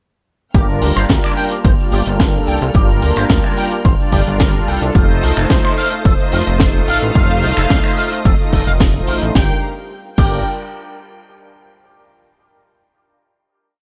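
An overdriven, punchy electronic kick drives this cosmic, groovy nu-disco piece at 109 BPM in G minor, four-on-the-floor and up front, with a tight funk kit adding a high-tuned snare backbeat, finger snaps, shaker, hi-hat and crash. A glossy chorused synth bass plays a funky syncopated line with filter sweeps, while a bright, twangy envelope-filtered guitar repeats a 16-step riff over a smooth, detuned analog pad in pumping dotted-rhythm chords and a lush, distant string section moving from Gm7 to F7. At 5.2 s a dark, reedy violin section enters with hook phrases through tape echo, and the piece settles on a final Gm7 chord at 9.4 s.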